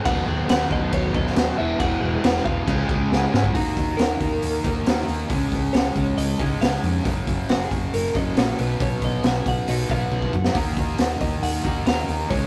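A gritty, boomy, up-front garage drum kit with a high-tuned snare and dark cymbals drives this cathartic, restless quiet-loud alternative rock excerpt, joined by a bright, double-tracked fuzz guitar riff, a round hollow-body fingered bass, a twangy clean twelve-string electric melody and a background overdriven guitar riff that drops out at 3.5 s, where a very quiet, boxy parlour acoustic starts picking arpeggios alongside a clean electric guitar solo, all set in a rough rehearsal-room sound with tube saturation and moderate stone-room reverb.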